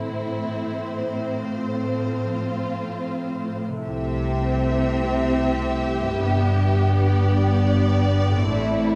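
A dark, warm production with a moderate scoring-stage reverb surrounds this tender, moving cinematic cue for orchestra, cut from a longer piece and unfolding in a flexible, rubato three. Lush bowed violins carry a focused, vibrato-laden melody at the top, while a second violin line sits further back, expressive and distant. Beneath them, violas and cellos hold an even, smooth accompaniment and bass line, and a bright concert harp plays ringing arpeggios in the background. At 3.9 s a sombre French horn section adds sustained chords behind the strings, and a rich double bass section enters below the cellos to deepen the low end. The harmony passes from Am through F/A to C6 and then G.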